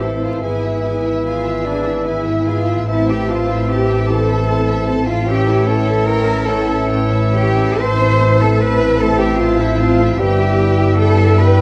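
A rich, up-front double bass section anchors this yearning, elegiac classical excerpt in a rubato 6/8, with a focused cello section below a distant, bright violin melody, while a hollow flute, warm oboe, clear clarinet, second violins, portamento violas, mellow bassoon and French horns fill out the harmony, all set in a dark production with scoring-stage reverb and vinyl crackle.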